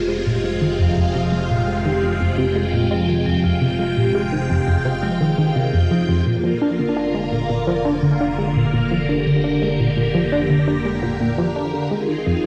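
Recorded at home on cassette, this excerpt of ambient, sequencer-driven space music sits in a wet studio reverb that gives it a cosmic, expansive air. At a steady 85 BPM in 4/4 with a straight feel, a tight sequenced synth drives the piece with a detuned sawtooth riff, its fast filter pluck softened by chorus, delay and tape into a mellow, evolving pulse. Up front, a phased string machine holds bright, swirling vintage chords with a soft attack, colored by ensemble chorus, phaser and cassette tape. Underneath, a fat analog bass anchors everything on a low F, its thick, saturated sawtooth tone plucked by the filter and sustained. In the background, a dark, smooth vibraphone with medium hard mallets and the motor off rings out metallic arpeggios through tape and delay until 6.2 s. The harmony moves from Fm to Bb/F at 6.3 s, settling on Fm7 at 11.9 s.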